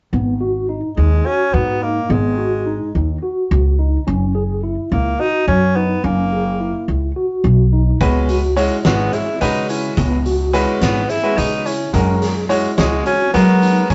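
A rough rehearsal-room recording with a dull top end and a small, wet room, this brooding, tense progressive instrumental moves in a straight 7/8 at 214 BPM in eighths, cut from a longer piece, over G#m7, F#add9 and C#m7 chords. A clean tine electric piano plays arpeggios through its built-in speakers while a woody, thumpy pizzicato upright bass on gut strings sits up front, and from 1.0 seconds a clear, punchy tenor saxophone carries the solo melody with vibrato in a pop style. At 8.0 seconds a brilliant, intimate grand piano with audible action noise and long sustain joins on accompaniment, alongside an oversized, low-tuned drum kit with a fat snare, punchy kick and hi-hat, saturated and gritty in a pumping stone room.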